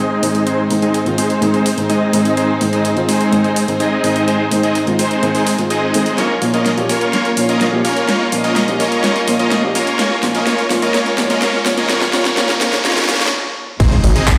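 A straight 4/4 pulse drives this triumphant, uplifting festival progressive house build-up, cut from a longer piece, where bright, detuned supersaw chords pump up front through a filter sweep and tape echo over a mellow felt-muted upright piano, distant bowed strings and a big-room kit with a huge snare and metallic hats whose fill begins at 6.2 s, until a brief stop and a very quiet riser give way at 13.8 s to the impact, a punchy electronic kick and a thick, chorused saw bass, heard through a large sound system in a bare, reverberant room.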